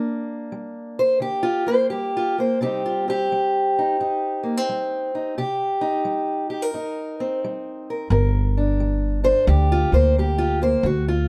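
A dark, warm production with a modest small-room ambience frames this brief, mournful fragment of acoustic country blues, swung and smoky in 4/4. A boxy, parlour-sized steel-string acoustic guitar carries the melody up front with fingerpicked lines and a touch of plate reverb, moving from G minor to C minor and back. At 8.1 seconds a woody, pizzicato upright bass enters low beneath it, and both play on until the cut at 11.3 seconds.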